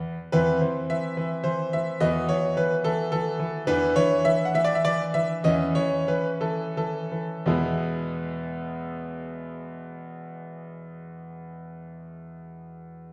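Heard from further back in a reverberant recital hall, this playful, elegant classical-period piano sonatina in E major, cut from a longer piece, features a bright solo concert grand with brilliant, present tone, deep bass and long sustain, moving in a rubato 3/4 at 83-109 BPM and slowing from 2.8 to 7.5 seconds through chords such as Cmaj7/E and Dmaj7sus2/E before settling on E at 7.5 seconds as a new section begins.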